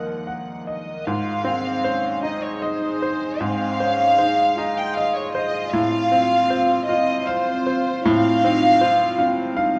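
A close chamber violin section carries the melody with light vibrato and a soft, sul tasto touch above a distant, floating solo cello line, an up-front bright grand piano accompaniment with audible action noise, and a swirling, detuned analog pad treated with phaser and chorus, set in a wet large studio reverb in this fragile, melancholic neoclassical fragment, played rubato in 6/8 at 52 BPM as the harmony moves from Ebmadd9 to Ab6 at 1.1 seconds and F/A at 5.7 seconds.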